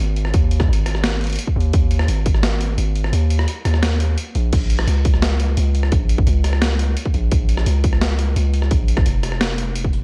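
A deep, sine-toned 808-style bass sits up front from the start, its long notes hitting with a fast attack and decaying under a gritty, compressed boom bap sampler-style kit of crash, hi-hat, rim click and high-tuned snare re-recorded in a large room, while a heavy electronic kick drives this heavy, cinematic half-time drum and bass excerpt until it drops out at 2.3 seconds and returns at 4.5 seconds, all captured dry with the character of a home cassette recording.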